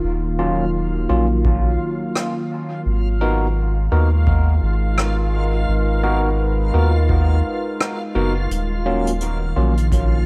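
This hazy, deep ambient dub excerpt in G# dorian opens at 85 BPM with a warbling, detuned tape-like pad holding sustained chords through chorus and reverb, a round, up-front sub bass and a reversed, granular texture swelling dreamily above, while a gritty, overdriven tine electric piano adds barky stabs through phaser and dub echo. A tape-warm analog kick arrives at 1.4 seconds and a vintage brush kit follows at 2.2 seconds with hi-hat and rim clicks, giving a swung 16th-note lilt. The harmony moves from D#m7 to G#m7 at 2.9 seconds before returning to D#m7, all set in light reverb and studio ambience.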